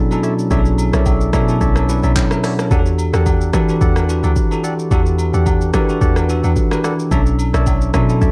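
A dark mix with digital ambience and a top end capped at 11.0 kHz frames this soulful, late-night amapiano cut at 109 BPM in E dorian, swung on the sixteenths and moving from Bm11 to Em11 and back. A bell-like, clean tine electric piano with lush chorus sits up front beside an overdriven deep house kit of deep kick, handclaps, hi-hat, rim click and shaker, while a round, percussive FM log drum bass enters at 0.5 s. Hollow, wave-folded organ stabs treated with chorus and digital delay punctuate the groove, and acoustic agogo bells and woodblock sit in the background.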